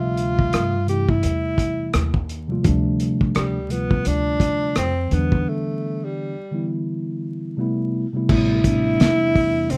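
Nocturnal and smoky, this short jazz-hop cut moves at an unhurried 85 BPM in A minor with a lazy sixteenth-note swing. A breathy tenor saxophone carries the melody up front, its smooth top and light vibrato softened by plate reverb, while a mellow tine electric piano plays accompaniment through its built-in speakers with a clean, warm tone. Underneath, a pizzicato upright bass adds woody, thumpy low notes. The cloth-damped drum kit enters at 0.2 seconds and sits loudest in the mix, with a fat snare, tight kick, rim clicks, hi-hat and dark, muffled crashes, all saturated and gritty with a rolled-off top. The harmony drifts from Dm11 through G9sus4/D and Em7 to Am9, with a break at 5.5 seconds and a new section arriving at 8.3 seconds. Vinyl crackle and light reverb give the whole thing the rough, intimate feel of a home demo.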